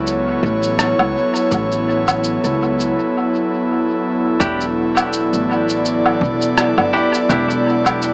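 Heard through a small-speaker sound with moderate spring reverb and a heavy wash of echo, this brief ambient dub fragment, cut from a longer piece, feels deep and hazy at 83 BPM in 4/4, with a gentle 16th-note swing. Up front, an airy, breathy pad built from detuned sawtooth and triangle tones with a noise layer holds slow-blooming sustained chords, thickened by chorus, moving from A to Em7 at 4.4 seconds. Beneath it, a woody, dark upright bass plucked on steel strings carries the low end with a touch of tube saturation. The percussion is a sampler-style blend of electronic cabasa, rim click and woodblock, pitched down, muffled and overdriven as if re-recorded in a small room, trailing dub echo, while a deep, layered electronic kick sits in the background. At 4.4 seconds a bright, clean semi-hollow electric guitar adds picked, compressed stabs soaked in dub echo, dropping out at 7.5 seconds.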